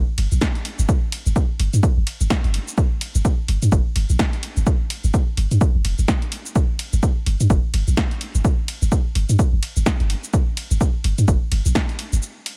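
Dry, with its drums re-recorded in a small room, this clinical, cool minimal techno excerpt in G minor runs at 127 BPM with a 59% swing on the 16ths. It is built on an up-front sine sub bass with a pitch-drop attack that pumps against the sidechain from 0.0 seconds, a punchy tape-warm electronic kick, and an analog drum machine of hi-hat, ride cymbal, shaker and snare that carries on alone through a brief break at 12.2 seconds.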